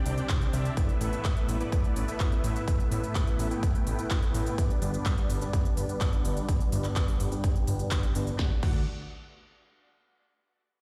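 Festival progressive house at 126 BPM with a euphoric, triumphant mood, this excerpt from a longer piece is driven by a huge, detuned supersaw riff carrying a filter sweep, delay and sidechain pumping through Csus2, Asus2 and G before landing on D at 8.4 seconds, over a fat, saturated analog bass that pumps in tandem, a punchy up-front electronic kick, and a big-room dance kit of crisp hi-hats, snare, handclaps, cabasa and crash cymbal, all heard through a big sound system in a bare stone room.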